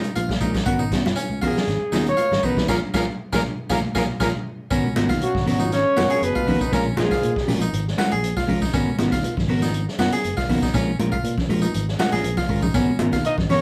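Afrobeat with a defiant, driving straight four-feel, this excerpt is built on bright, plucked harpsichord arpeggios, clean electric guitar stabs with spring reverb, a round, punchy fingered bass and an up-front vintage drum kit with a punchy kick and rolled-off top, with ringing high-tuned congas in the background and very quiet woody claves. A dark, breathy trumpet carries the melody from 1.5 seconds with scooped notes and vibrato, and at 5.2 seconds a warm alto saxophone and a very quiet, clear trombone section add second lines until 7.7 seconds. The track has a rough rehearsal-room sound with moderate reverb, a full-band accent early on and a short drum fill near the end.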